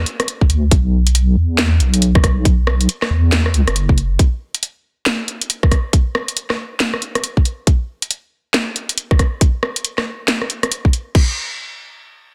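Meditative and brooding, this deep dubstep excerpt at 138 BPM in B minor moves with a swung, half-time feel as a dark, detuned wobble bass with chorus and tube saturation rumbles from F#1 to E2 until 4.2 seconds, while a tight, up-front electronic kick and a garage kit with a cracking, soft-clipped snare, rim click, crash and hi-hat carry on to 11.3 seconds in a dry, dense, heavily limited mix.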